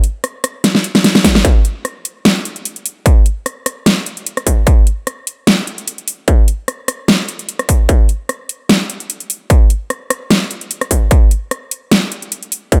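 Dubstep at 149 BPM with a half-time feel and a light 16th-note swing, aggressive and chaotic in mood, cut from a longer piece. A dubstep drum kit of hi-hat, rim click and a huge snare sits up front from the opening, its metallic hats and layered, produced sound pushing through a digital ambience, with a drum fill from 0.6 to 1.4 seconds. At 1.2 seconds a distorted, layered electronic kick drum arrives up front and pounds alongside the kit to the end.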